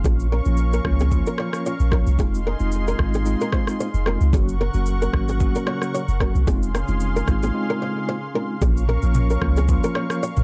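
A swung afrobeats groove at 112 BPM in Bb minor sets a sultry, smooth mood, as an electronic afro-pop kit with a deep kick, rim click, shaker and toms plays alongside a punchy, up-front sine sub bass with a pitch-drop attack, while a mellow tine electric piano through plate reverb, a detuned sawtooth analog pad with chorus and tremolo, and a small fingerpicked nylon-string guitar riff with digital delay move through Bbm, Fm7, Gb and Dbmaj7/F, with a break at 7.5 seconds before the chords return to Bbm at 8.6 seconds in this dark, dry excerpt of a longer piece.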